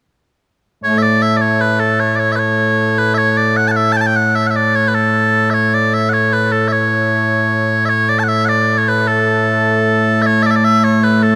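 Scottish traditional pipe music in a straight 6/8, this ceremonial, stirring fragment of a longer piece features solo bagpipes, loud, bright and piercing up front, sounding continuously from 0.8 to 11.4 seconds and spanning A2 to A5, set in a huge ambient reverb within a dark production.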